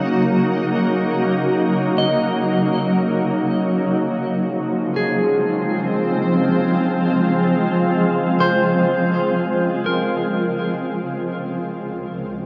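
Ambient music in free time and Db major, weightless and peaceful, cut from a longer piece and set in a huge, wet reverb with a dark production. A shimmering, ethereal pad sits up front, its detuned unison voices and octave-up shimmer carrying sustained chords with chorus, while a filter sweep moves across it for the first 4.0 seconds before the harmony settles from Ebm7 onto Dbmaj7. Higher up and further back, a clean, picked electric guitar plays arpeggios through phaser and a diffuse delay. The harmony shifts to Ebm7/Db at 11.8 seconds, and the guitar stops shortly after, at 12.2 seconds.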